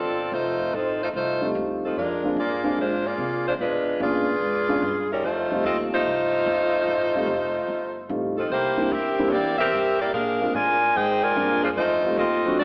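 A tight, up-front saxophone section carries the melody with vibrato in this joyful, brassy big band swing fragment at 147 BPM in F mixolydian, over thumpy, woody pizzicato upright bass, with a warm upright piano accompanying from 1.4 s, heard in a wet recital hall with an AM radio sound.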